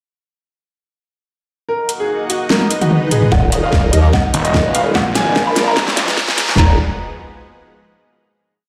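A booming, roomy mix with a large studio reverb frames this whole piece of heavy, menacing wobble dubstep in Eb harmonic minor at 147 BPM, riding a swung half-time feel. A clear, boxy baby grand piano repeats a riff melody through low-pass filtering and digital delay over a lush, sidechain-pumped supersaw pad, as two layered dubstep drum kits bring metallic hats, a huge snare, a knocking kick, claps and toms, and swell-and-riser effects stay in the background. From 3.3 s a saturated, up-front formant-sweep wobble bass enters with changing wobble speed for the build, joined at 4.3 s by a snarling, growling distorted saw bass in chopped phrases, before everything resolves on a final Ebm chord at 6.6 s.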